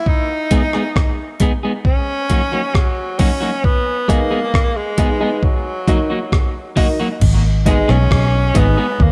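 Light reverb and a digital ambience wrap this echo-heavy dub reggae fragment, which moves with a hypnotic, meditative calm over a steady, straight pulse. A bright, punchy tenor saxophone carries the melody up front with vibrato and a forceful, pop-style solo voice, its phrases trailed by dub echo. A gritty, compressed, sampler-style breakbeat kit with a thumpy kick sits prominently, driving crash cymbal, hi-hat and rim click through the opening break, while a picked electric guitar on the edge of break-up adds slightly broken-up accompaniment, also fed into dub echo. A clear, woody upright piano arrives at 4.1 seconds with stabs set in the background and soaked in echo, as the harmony rocks between G#m and D#m. At 7.2 seconds a dark, round, foam-muted vintage electric bass enters up front, anchoring the closing moments with an amped low end.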